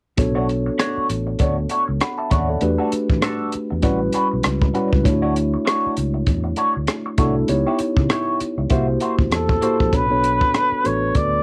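A 98 BPM groove in 4/4 with a 16th-note swing sets the pace for this short cut from a longer piece of lush 1970s-style soul in B minor, silky and cinematic in mood. A compact cocktail drum kit, dark and smooth with a punchy kick, rim click and hi-hat, sits up front alongside a bright, growly fingered electric bass that anchors the low end from the start. A mellow tine electric piano carries the harmony through rich chords such as Bm9, Em11, A13 and Dmaj7, while a clean, twangy electric guitar with wah plays a compressed, picked riff until 9.8 seconds. At 9.3 seconds a distant, roomy flugelhorn enters with a soft attack, vibrato and scooped notes, delivering a jazz-style solo line shortly before the progression returns to Bm9. The piano, guitar, drums and horn carry the tape colour of a home cassette recording, all set in light reverb.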